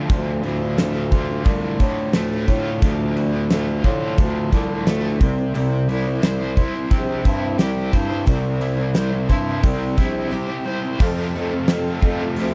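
A dry, close 1970s-style studio sound frames this brooding, swaggering classic rock fragment in D minor at 88 BPM, moving from Dm to C before landing on F. An up-front arena drum kit with a fat snare, punchy kick and bright cymbals drives two overdriven electric guitar riffs, one from a cranked stack with harmonic tremolo and the other warmer. Meanwhile, a clear, vintage bass clarinet holds the low line and a picked steel-string acoustic guitar, finger squeak audible, sits in the background. After a break at 10.3 seconds, a full tonewheel organ with lush chorus and vibrato enters at 11.0 seconds, lightly overdriven beneath the closing chord.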